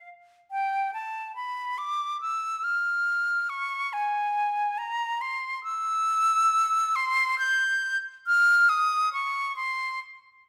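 A bright, airy solo flute sits up front in a moderate recital hall, its sound carrying a reverb tail of about 1.5 seconds. This is a classical, baroque-style fantasia for unaccompanied flute, cut from a longer piece, moving at 70 BPM in 3/4 with a rubato feel. The silver concert flute plays alone from 0.0 to 10.0 seconds, staying in its upper register between G5 and G6. Its metallic tone has lifted highs, a soft attack and a vibrato that lend the line a singing quality. The mood is introspective and grave, the free, unhurried pacing giving the passage a searching, meditative character.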